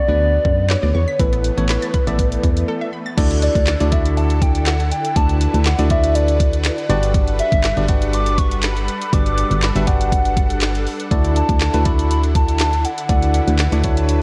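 A carefree, upbeat dance-pop excerpt moves with a straight 4/4 feel, carried by a hollow, woody synth lead with a mellow, clarinet-like tone, colored by chorus, phaser and vibrato as it sings the melody from the start. Beneath it, a lush, detuned supersaw pad holds sustained chords through phaser and sidechain pumping, while a bell-like tine electric piano adds bright, clean accompaniment. A round, sawtooth-and-ring-modulated analog pluck spins arpeggios with chorus and tape echo in the opening, then stops at 3.2 seconds after a short break. The solid FM bass sits punchy and dark up front, pumping with the sidechain, and a smooth R&B drum kit enters at 0.4 seconds with a knocking kick, woody snare, handclaps, hi-hat and crash. Light digital ambience surrounds the mix, and a worn, warbling cassette quality with drifting pitch gives the whole track an aged character.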